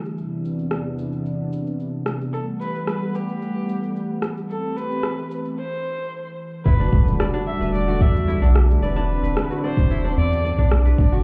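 A straight 4/4 pulse of electronic cabasa and rim click drives this mystical, earthy organic downtempo excerpt at 111 BPM, where a detuned sawtooth pad with chorus, tremolo and sidechain pumping sustains chords under a filter sweep while a mellow bronze singing bowl rings in the background, a nasal, bowed kamancheh with vibrato and portamento takes the melody through digital delay from 2.3 seconds, and after a break at 5.6 seconds a soft electronic kick, a deep, round analog bass, crisp fingerpicked kora arpeggios and a background impact arrive together at 6.7 seconds, all heard muffled as if through a wall in a small room with club reverb.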